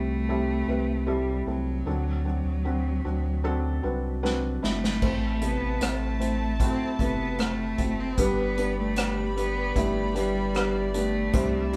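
Opening this tender, emotional excerpt of a 76 BPM pop ballad in G major, a clear, focused bowed cello carries the melody with vibrato over a soft, felt-muted upright piano with audible action noise and a deep, round sine sub bass, until an acoustic drum kit with dark cymbals, played with bundle sticks, enters on a fill at 4.2 seconds and a floating, sul tasto string section joins at 5.0 seconds, the band heard playing live in one room with a wet studio reverb.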